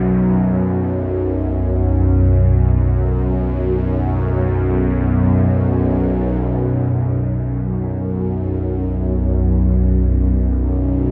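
Dark and cavernous, this free-time dark ambient drone is cut from a longer piece and rests on a tense, string-like bowed drone that sits up front from the start to 11.1 seconds, its detuned sawtooth tone carrying a noise layer, vibrato, phaser and built-in reverb as it moves from a Bsus2 chord to B5 at 6.4 seconds. Beneath it, a deep, moody analog pad with a sub octave and chorus and a ringing, metallic bronze singing bowl struck with a felt mallet stay barely audible until both fall away at 6.4 seconds. A huge ambient reverb with a long 7.5-second tail gives the dark production its sense of depth.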